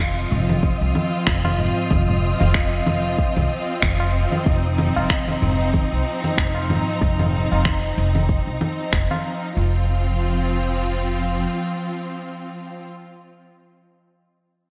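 A swung 94 BPM groove of deep electronic kick, up-front electronic finger snaps, congas and cabasa, with a ringing, high-tuned tabla sitting close and dry in the background, drives this mystical organic downtempo excerpt over an F5 chord. A woody pizzicato upright bass and a clear, lush symphonic string section holding bowed, vibrato-rich chords both carry sidechain pumping, while an airy, breathy wind-like texture drifts behind them. The percussion falls away by 9.5 seconds, leaving bass and strings in a bright 1980s-style digital sound within a lush hall reverb until the strings close at 12.9 seconds.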